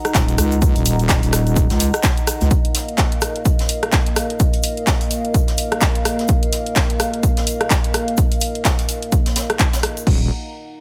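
Swaggering, bouncy bass house with a swung sixteenth-note feel, cut from a longer piece, where a punchy, up-front electronic kick and a tape-warm garage kit of crash, handclaps, hi-hat and rim click ride over a deep, moody analog pad of detuned, ring-modulated sustained chords with chorus and sidechain pumping, while a heavy, saturated wobble bass pumps beneath until 2.5 seconds alongside a grainy egg shaker in the background, then returns at 10.1 seconds, and a very quiet, airy jazz brush kit adds a high-tuned snare, hi-hat and shaker throughout in small room ambience.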